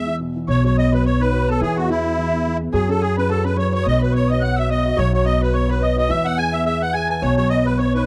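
Celtic folk reel at a bright, lively 214 BPM in 4/4 with a light swing, cut from a longer piece. An up-front, reedy musette accordion with shimmering wet tuning carries the melody over a dark, long-sustaining baby grand piano, while an airy wooden whistle with vibrato and a crisp, chiffy attack adds a mellow second line in the background. At 0.5 s a ringing, fingerpicked concert harp joins as another background line, and a growly, woody pizzicato upright bass comes in up front, all in the dry, close sound of a small 1970s-style studio room.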